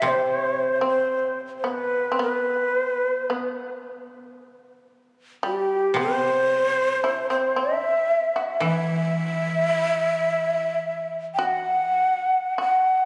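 Captured on a phone in a room awash with long church-like reverb, this still, austere fragment of a longer Japanese traditional piece drifts in rubato around 55 BPM in E hirajoshi. Up front, a breathy bamboo shakuhachi carries the melody with soft attacks and vibrato. Beneath it, a buzzing, plectrum-plucked fretless shamisen traces a percussive second line, and a woody koto, played with fingerpicks, supplies low accompaniment until it falls away at 12.0 seconds, just before the other two end near 13 seconds.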